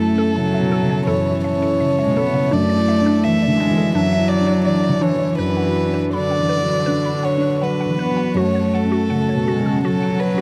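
Neoclassical piano and strings at 82 BPM in a rubato 4/4, reflective and longing, where an airy, sul tasto violin with tape echo carries the melody over a nasal, floating cello line and a felt-muted upright piano that sits intimate and up front, while a chamber string section holds sustained chords and a hollow, detuned square-wave pluck with chorus and tape echo spins bouncy arpeggios in the background, all captured as a dry, close 1970s-style studio recording moving from A/F# through Dsus2/F# and Bm/F# to F#m.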